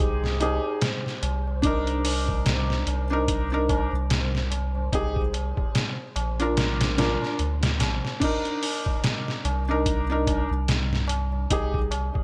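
Trip hop at 73 BPM in C minor with a swung 16th feel, this hypnotic, dark piece, cut from a longer one, sets a felt-muted upright piano, mellow and intimate with audible action noise, harmonic tremolo and tape echo, over a round, tube-saturated dub sub bass and a gritty, pitched-down sampler-style drum kit with a thumpy kick and gated reverb, while a low-tuned tabla sits in the background and an airy, breathy wind-like noise texture hovers very quietly until 8.2 s, within a bright 1980s-style digital production with light reverb, as the chords move from Cm through Fm7/C and Bb before returning to Cm7 and Cm.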